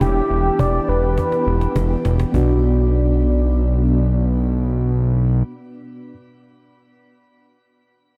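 A fat, detuned sawtooth analog bass sits up front in this cool, nocturnal synth-pop fragment, its filter pluck and evolving tone anchoring the low end at 103 BPM in B minor. Above it, a bold, retro octave-doubled lead carries the melody with a warbling vibrato, its bright sawtooth-and-triangle voice treated with chorus, low-pass filtering, tape echo and shimmer reverb. A mellow tine electric piano supplies accompaniment through its built-in speakers, staying clean and lingering until 6.1 seconds, while a swirling, vintage string machine holds sustained chords in the background, colored by ensemble chorus and phaser. A woody cajon played with soft hands adds faint snares and a drum fill from 1.2 seconds before dropping out at 2.5 seconds, shortly after the harmony moves from Em7 to Bm. The whole mix is dreamy and soaked in a lush hall reverb, giving this short cut from a longer piece a hazy, late-night glow.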